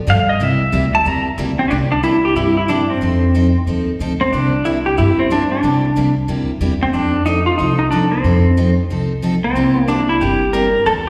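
A bright, twangy pedal steel guitar sits up front with the melody in this playful, down-home western swing excerpt, its clean, compressed, fingerpicked slide lines dressed with volume swells and slapback echo. Beneath it, a full-bodied dreadnought acoustic guitar with fresh strings is picked through the same echo, while a woody, thumpy gut-string upright bass holds down the swung groove as the chords move from C9 to C7 at 1.7 seconds and F7 at 3.0 seconds. It sounds like a live gig heard through the venue's PA, with recital hall and plate reverb and some lossy compression artefacts.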